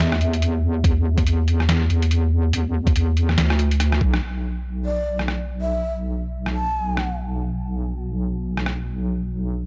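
Dark and cavernous, this deep dubstep excerpt moves at 142 BPM in a swung, half-time 4/4 feel in B minor, cut from a longer piece. A heavy, up-front wobble bass built from square and sine tones holds the low end throughout, saturated and thickened with chorus. A gritty, pitched-down trip hop sampler-style kit with hi-hat, rim click and a medium-tuned snare runs until 8.8 seconds, overdriven and compressed, while a layered, knocking electronic kick joins at 0.8 seconds and drops out at the band accent around 4.1 seconds, during a drum fill. A breathy, end-blown bamboo shakuhachi with soft attack and vibrato sounds briefly at the start, then returns close-miked from 4.9 seconds with dub echo trailing its line. From 6.3 seconds a blurred, evolving granular pad drifts in the background with its own reverb, shaped by a filter sweep, all set in a dry, cassette-tinged hardware sound.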